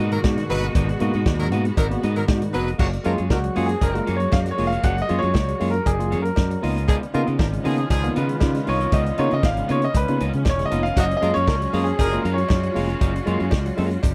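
A clear concert grand piano carries the melody from 3.3 seconds, intimate and up front, with audible action noise, deep bass and long sustain, taking a solo over a glamorous, joyful disco groove at 117 BPM in F# major. Underneath, a vintage acoustic drum kit with a punchy kick, medium-tuned snare and rolled-off top drives the straight 4/4 pulse alongside a dark, round fingered electric bass, both sitting close in the mix. A barky, lightly overdriven tine electric piano and a bright, clean semi-hollow electric guitar fill in the accompaniment. A tight horn section with pop-style vibrato punctuates with stabs, while a biting, focused string section holds sustained chords in the background. A metallic cowbell sits further back. The harmony moves from G#m9 to F#maj9, C#13 and back to F#maj9, and the dry, close 1970s-style studio sound keeps the piece immediate.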